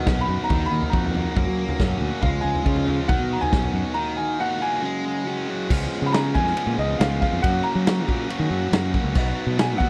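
A dry, close recording with a 1970s studio feel frames this upbeat yet wistful indie rock passage at 139 BPM in a straight 4/4, cut from a longer piece. A clear, woody upright piano with audible action noise carries the melody high above two picked guitar riffs, one overdriven and compressed, the other a bright high-gain distorted part touched with subtle chorus and slapback echo, while a growling fingered bass with overdrive and a punchy, gritty garage drum kit with crash, ride, snare and toms drive underneath. A break from 4.0 to 5.7 seconds leads into a new section, with the chords moving from Badd9 and D#m through C#sus4 to C#7, F# and B.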